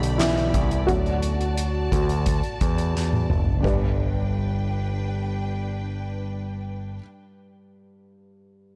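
The recording sounds blown-out and pushed into overdrive, with a light studio reverb around a short cut from a longer piano-driven pop piece in G major. At 87 BPM in a straight 4/4, the mood is anthemic and warm, with the harmony moving from G to D and back to G at 3.6 s. A dark, woody upright piano carries the accompaniment with a worn, intimate character: its action noise is audible and its tuning slightly off, and it takes a solo passage through the opening section. Beneath it, an up-front, overdriven picked electric bass holds the low end, while a lush, close string section sustains bowed chords with vibrato until 7.0 s. A soft-mallet acoustic drum kit with a fat snare, boomy kick, crash, hi-hat, toms and handclaps sits up front in a big room, and it plays a fill just before stopping at 3.8 s. The piano carries on alone to the end at 8.8 s.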